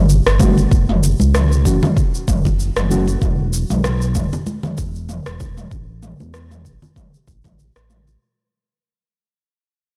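Blown-out and overdriven with light digital ambience, this hypnotic, mystical organic downtempo fragment at 96 BPM fades out across its 8.2 seconds as a smooth, gliding sawtooth-and-square synth bass pumps up front under a punchy electronic kick, a deep house kit of rim click, shaker and toms, and close, dry congas, while muted, felt-like synth keys, warbling with chorus and delay, glow only from 0.4 to 3.1 s over chords moving from Gmaj9 through F#5 and E5 to A5.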